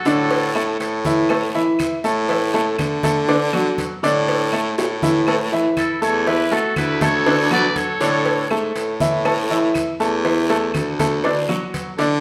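Cuban son in a guajira vein, this relaxed, warm groove is cut from a longer piece and moves at an easy, straight four. A muted trumpet carries the melody with a buzzy, growling tone, vibrato and scooped notes, while a bright open trumpet sits behind it on a second line; both sound briefly at the start and return from 5.8 to 8.5 seconds. Underneath, an edgy, punchy baritone saxophone plays the bass line up front throughout, and a brilliant, worn-sounding grand piano with short sustain rolls arpeggios across the whole passage. The percussion blends round, low-tuned cowbell and bongos in the background, hard-handed congas with a thin skin, a raspy guiro and very quiet woody claves, with a drum fill at 4.8 seconds. A large studio reverb wraps the ensemble in a generous, wet space as the harmony settles between D and A chords.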